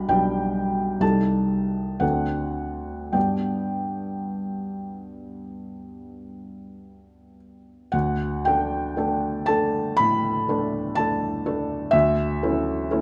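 Classical romantic nocturne for solo felt-muted upright piano, nostalgic and serene, drifting in rubato 4/4 between 46 and 67 BPM, its soft, intimate tone sitting up front in a wet, large studio reverb as this short excerpt moves from G major chords such as G/B, Am7b5/C and D7 into D major at 7.9 s, reaching A/D at 11.9 s.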